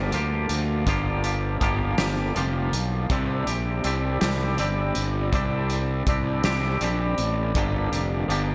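Brooding and cathartic, this short excerpt of quiet-loud alternative rock moves in a slow 6/8 at 54 BPM counted in dotted quarters, set in G minor and tuned slightly sharp to A4 = 445 Hz. A clean, twangy electric guitar sits up front with fingered arpeggios, colored by tremolo and slapback echo as it spans G2 to G4. Beneath it, a fingered electric bass growls with overdriven fuzz, bright and punchy, holding the low end between F1 and D2. A loose indie drum kit enters at 0.1 seconds with hi-hat, a fat snare and a punchy kick, its pumping studio room adding weight. The harmony moves from Gm7 to Csus2 at 3.1 seconds and returns to Gm7 at 7.6 seconds, all bathed in a lush hall reverb that gives the recording a big arena sound.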